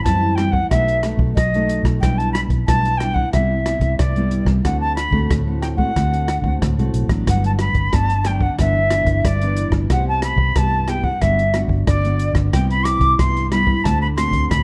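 A straight 4/4 groove sets a sunny, playful samba and choro feel in this short cut from a longer piece. Hi-hat, boomy kick and rim click come from a smooth, rolled-off small-room drum kit, while a foam-muted vintage electric bass adds round, punchy low notes under a fingerpicked classical nylon-string guitar. Over this light-reverb, dark-toned production, an airy, expressive jazz flute carries the melody up front with vibrato and a crisp chiff on its attacks.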